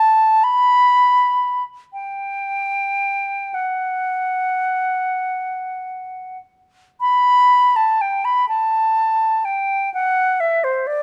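A solo concert flute opens this brief classical excerpt, its pure, straight tone sitting up front as it moves freely in 6/8 with expressive rubato. The serene, nostalgic line stays within a compact upper range, tongued notes shaping a first idea before a contrasting passage arrives at 7.0 seconds and carries through to 11.0 seconds. Light reverb and a dark, warm production give the unaccompanied instrument a gentle, intimate glow.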